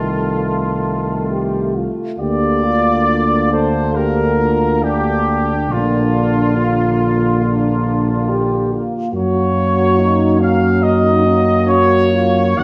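A clear trumpet section carries the melody up front in this lyrical, serene classical brass band passage, its light vibrato singing over a hymn-like texture cut from a longer piece. Set at 69 BPM in 4/4 and Bb major, the music moves with uneven beats and a rubato feel, the pulse breathing rather than marching. Beneath the trumpets, a mellow French horn section sounds distant and roomy as it shapes a second line, while a bright, tight trombone section and a punchy, present solo trombone sitting in the background fill out the accompaniment. A solo tuba anchors the bass up front with a smooth top to its tone. The harmony moves from F7/C through Bb/D and Bb before turning to Gb at 9.1 seconds, and the whole ensemble sits in a wet recital hall reverb that lends the phrase a spacious glow.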